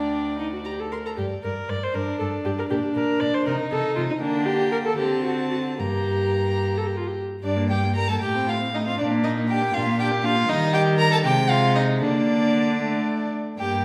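A wet recital-hall reverb with a 1.3-second decay surrounds this string quartet, recorded in a church or concert hall. The music is a quick classical-period movement in G minor and 6/8, moving at 72-80 dotted-quarter beats per minute with a rubato feel and an urgent, restless mood. The first violin carries the melody from D5 to C6 with a reedy, period-style gut-string tone, while the second violin supplies a dark, nasal second line from Bb3 to D5 that sits distant in the hall. Up front, the viola plays a smooth-topped accompaniment from G3 to D5, and the close, rich cello holds the bass from D2 to Eb3, all four bowed by single players throughout the clip. The harmony moves through Bbadd9, Cm and Gm/D before a new section at 7.4 seconds turns toward F9/A, Bb, Eb and Ab/C, closing on a bare D5 at 12.8 seconds in this excerpt from a longer piece.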